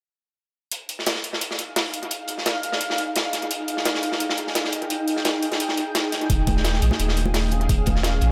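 A gritty, crunchy breakbeat kit with a mid-forward snare and delay-tinged echoes enters with overdriven, bright electronic hi-hats at 0.7 s, joined at 1.7 s by a shimmering, ethereal ambient pad of detuned, sidechain-pumped chords, before a round, tube-saturated sub bass and a knocking overdriven kick arrive at 6.3 s, with ringing, close congas following at 6.5 s to deepen this melancholic, rolling liquid drum and bass excerpt, all set in an echo-heavy mix with a plate reverb.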